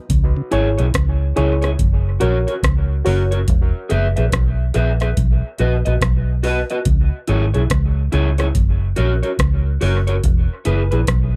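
A round, foam-muted fingered electric bass sits up front in this hypnotic, spacious dub reggae excerpt at 71 BPM in C# dorian, its swung sixteenth-note feel paired with a booming analog drum machine of deep kick, metallic hi-hats and rim clicks, re-recorded in a large room. A dark, slightly broken-up electric guitar with subtle chorus and dub echo joins at 0.5 s alongside stabs from a reedy, worn, slightly out-of-tune electric piano heard through its built-in speakers, which also carries dub echo and drops out at 3.3 s. The chords cycle C#m, F#, E and B in a dry, close 1970s-style studio sound.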